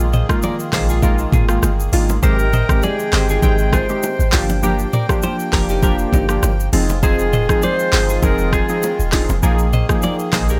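A dry recording with a faint mains hum carries this romantic, sunny afrobeats passage at 100 BPM in Bb mixolydian: a boomy, clean 808-style bass and an up-front electronic drum kit (deep kick, metallic hi-hats, handclaps, rim clicks, shaker and toms) sit beneath detuned sawtooth analog keys with chorus, a reedy accordion holding sustained chords in the background, a twangy electric guitar riff with tape echo, and very quiet hard-hand bongos and congas, while a breathy, distant alto saxophone melody with light vibrato and tape echo plays from 2.2 to 9.1 seconds over chords moving from Bb7sus4 through Gm7 and Fm7 back to Bb7sus4.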